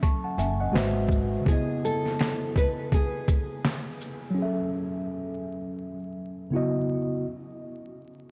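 A dreamy mix drenched in cathedral-scale reverb and dusted with vinyl crackle opens this short fragment of a lo-fi hip hop piece, hazy and reflective in mood, with a gentle swing. Up front, a worn, slightly out-of-tune tine electric piano supplies mellow chords through a cassette-tape sheen, moving from F#m7 through G#7alt to a lingering C#m9, returning to F#m7 and closing on C#m11. Beside it sits a compressed, pitched-down sampler-style kit of hi-hat, shaker, thumpy kick and fat snare, overdriven and muffled as if re-recorded in a small room, and it stops at 4.2 seconds. A woody, growly pizzicato upright bass appears only briefly at 0.4 seconds, and from 1.5 seconds a fingerpicked nylon-string guitar carries a quiet classical melody, its finger squeaks audible beneath lush chorus and tape echo. The electric piano plays on alone to the end, leaving its chords hanging in the long reverb tail.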